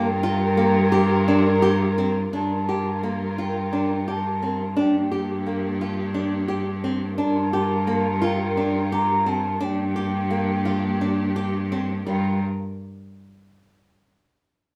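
A fingerpicked flamenco guitar sits up front, its fresh strings ringing out G minor arpeggios with audible finger squeaks, in this restless, hypnotic piece of contemporary chamber music in 7/8 at 173 BPM counted in eighths, tuned to A4 = 438 Hz. Above it, a mellow baroque flute carries the melody with a pure, woody, hollow tone, crisp attacks and vibrato, heard from a distance. A muted string section plays con sordino, holding dark, veiled chords with soft attacks and light vibrato. A single bowed cello anchors the bass on G with a clear, smooth, even sound and vibrato, placed up front yet with a distant quality. The passage opens on a Gm7 harmony, and the parts play together from 0.0 to 12.4 seconds in a wet small-room reverb heard from further back, in a passage cut from a longer piece.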